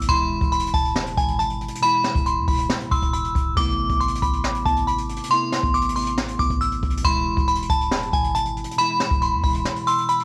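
Brooding and dark, this half-time trap cut from a longer hip hop piece moves at 138 BPM in A harmonic minor, with a glassy, crystalline synth bell carrying the high melody through chorus and phaser while a metallic, inharmonic FM bell rings a second line alongside it, touched by chorus, cassette-tape warble and analog delay. Underneath, muted felt-like synth keys give soft, intimate accompaniment over the chords E, Amadd9 and back to E, a deep, boomy 808-style bass sits in the background until 9.6 seconds, and an up-front jazz brush kit with a high-tuned snare and cassette grit anchors the groove, its kick dropping out at 9.7 seconds. The whole sits in light reverb with the hazy character of a home cassette recording.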